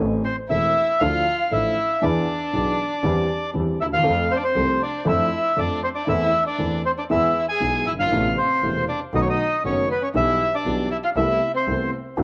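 A dark, woody upright piano and a bowed double bass open this sultry, dramatic tango fragment at 0.0 s, with the piano slightly detuned, boxy and up front, carrying a cassette-tape character. The bass sits distant and earthy, its biting tone touched with light vibrato. At 0.2 s a reedy, band-limited bandoneon enters with the melody, vintage in color and placed close to the listener. A single violin plays a second line beneath it with soft attack, vibrato and expressive portamento, its tone also shaped by cassette tape. The music moves at 118 BPM in 4/4 with a rubato feel in A harmonic minor, passing through chords such as Dmadd9, E7 and B7 before settling on Amadd9/C. Moderate spring reverb surrounds this home recording on cassette, which is cut from a longer piece.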